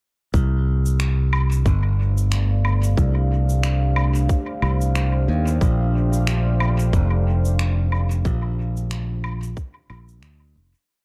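A bright, growly fingered electric bass sits up front in this hazy, meditative ambient dub piece, playing a dub-style line over a soft, tight electronic kick and a sparse beat of cabasa, finger snaps and low woodblock cast in dub echo. From 1.6 s a deep, moody pad of detuned sawtooth and sine layers with a sub octave drifts in behind them, carrying chorus, reverb and vintage 12-bit sampler grit as its chords shift from Csus2 to Bbmaj7 at 5.6 s. An echo-heavy digital ambience gives the swung groove a spacious feel, and the piece fades out from 7.4 s.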